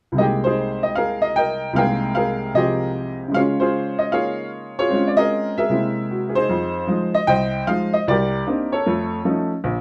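Cool and moody, this solo jazz piece features a single upright piano with a woody, boxy tone, playing in a swung 4/4 across a range from deep bass to the upper treble. Rich extended harmonies such as Fm11/C, Bbm9 and C7alt fill the opening, and a new passage begins at 6.5 s that moves through Fm7 and Cm9 to F7b13. The close, detailed miking and very dry room keep the instrument up front in this short cut from a longer performance.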